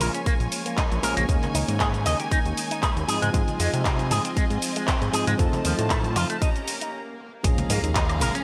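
A house kit of handclaps, bright hi-hats, shaker and woodblock under gated reverb opens this nu-disco excerpt at 117 BPM in 4/4, with a light swing on the sixteenths, alongside very quiet, soft-handed congas, and a punchy electronic kick enters a moment later to drive the groove. Set in Bb minor with a cosmic, sensual mood, the harmony moves from Bbm7 through Eb7sus4, Ab6, F7 and Eb7 before returning to Bbm7. A fat, detuned analog bass with a sawtooth edge pumps against the kick, while a rich, bowed string section holds smooth sustained chords and a twangy, clean electric guitar through an envelope filter plays a riff with subtle chorus and delay. A worn, slightly out-of-tune tine electric piano sits in the background, carrying a filter sweep across the passage along with delay and sidechain pumping. Near the end an electronic swell rises from 6.7 seconds, the groove briefly stops, and an impact lands at 7.4 seconds as the chords return home. 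The production is bright and 1980s-flavored, bathed in a lush hall reverb.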